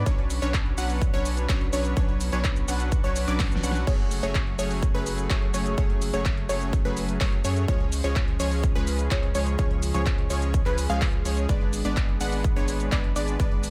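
A punchy, up-front electronic kick drives a straight 4/4 pulse at 126 BPM, entering at 0.1 s alongside a layered big-room kit of huge snare, handclaps, hi-hat, shaker and crash cymbal, both dressed in small room reverb, with a drum fill at 3.4 s. This is anthemic, euphoric festival progressive house in F# harmonic minor, cut from a longer piece, moving through Bmadd9, F#madd9, C# and G#dim. Beneath it, a deep, thick, saturated sine sub bass holds the low end with sidechain pumping. A detuned sawtooth supersaw stab carries the riff with an airy noise layer, an evolving filter-plucked attack and delay, while a lush, bright unison pluck spins arpeggios in the background, its wave-folded tone shaped by a filter sweep, moving notch and delay. Also pumping in the background, a dark, nasal chamber string section sustains bowed chords with a reedy, period-style gut-string tone and a smooth top, all within a dry, close mix.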